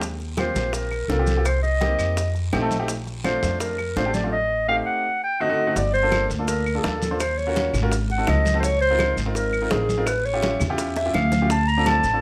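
A straight 4/4 groove at 167 BPM drives this sunny, sophisticated Afro-Cuban jazz excerpt, where a woody pizzicato upright bass sits up front beside a mellow, distant-sounding solo clarinet, while a clear baby grand piano with audible action noise comps through rich jazz chords and a background bed of bright vintage congas, tight high-tuned bongos, raspy guiro, grainy maracas and claves that drop out between 4.0 and 6.1 seconds leads to a drum fill at 11.0 seconds, all in a moderate large-studio reverb.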